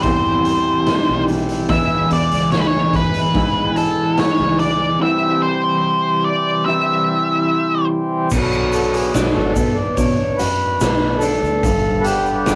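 A picked octave-fuzz lead guitar carries the melody from the first moment in this trippy, kaleidoscopic psychedelic rock excerpt, sitting up front over hand-pumped harmonium chords, a slightly broken-up electric guitar riff with tremolo through a small old amp, a round, foam-muted fingered bass and a raw garage drum kit. The tempo is a straight 72 BPM in 4/4, and the harmony moves from C to E and back to C before shifting to Bm and then G. The drums are saturated and gritty with a punchy kick, a medium-tuned snare, hi-hat and crash cymbal, their rolled-off top set in a bright stone room. The fuzz lead stops at 7.9 s, and from 8.3 s the reedy, breathing harmonium takes a solo while a grainy egg shaker joins in the background. The whole take has the rough feel of a rehearsal room with a short, wet booth ambience.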